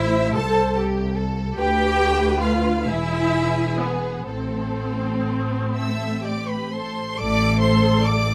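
A moderate studio reverb surrounds this brief fragment of a longer piece. It is a slow, solemn and elegiac romantic movement for string orchestra in a compound metre, played with flexible rubato. The first violin section carries the melody with a rich, focused vibrato. A second violin section sings a supporting line with a soft attack and expressive portamento. The viola section fills the middle with lush, bowed accompaniment, while the cellos supply a dark, smooth bass and the double basses add a warm, even foundation. All five sections play together throughout the 8.3 seconds, and the harmony moves through a dominant and back to the tonic before settling on a poignant added-eleventh minor chord at 7.2 seconds.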